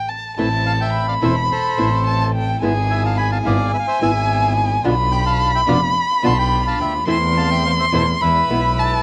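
Rubato phrasing stretches a 4/4 pulse in this dramatic, melancholic tango fragment, which opens with a brief band accent before its first section begins at 0.4 seconds. A reedy, dark bandoneon carries the melody from 0.7 seconds, while a close, expressive bowed violin with vibrato, portamento and a soft attack plays a high second line up front. Beneath them, a small, acoustic nylon-string guitar provides fingerpicked accompaniment with audible finger squeaks. A smooth, boxy bowed double bass with vibrato holds the low end prominently. An earthy chamber string section adds rich ensemble stabs in the background, touched with analog delay. The violin, guitar, bandoneon and strings carry a cassette tape colour, all set in the light reverb of a home recording.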